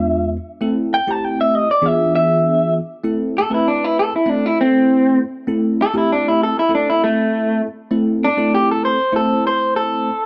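A picked electric guitar through a small old amp opens at once with a soulful, brooding blues solo in A minor at 99 BPM, its lo-fi, slightly broken-up, compressed tone sitting up front over a bright, bell-like tine electric piano, colored by phaser and heard through its built-in speakers, that outlines E7b9 and Am changes, captured in a dry, close 1970s-style studio sound with digital ambience in a passage cut from a longer piece.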